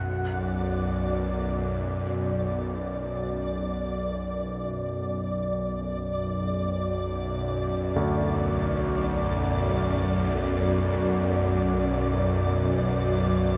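A tense, nasal bowed-like drone sits up front from the start, while a grainy, flickering texture hovers high above it in a huge, wet space, and at 8.0 s a warm concert grand piano with audible action noise and deep bass enters with delayed arpeggios, lending this cavernous, dark ambient excerpt an intimate weight.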